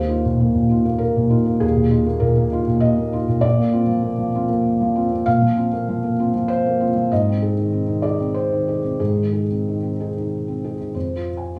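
In a flowing three-beat metre with a loose, rubato feel, this short fragment of neoclassical minimalist piano unfolds with hopeful, tender patience. A felt-muted upright piano plays alone from start to finish, ranging from Eb2 up to Ab5, its soft, mellow tone sitting close and intimate at the front of the sound. The harmony drifts from Ebsus2 to Bbadd9 and then settles on Ab, before turning to F minor at 11.0 seconds, shortly before this excerpt from a longer piece ends. The performance was captured live in a small room, and a wet studio reverb lends the muted piano a natural, gently glowing ambience. The instrument is tuned slightly below standard pitch, to A4 = 438 Hz.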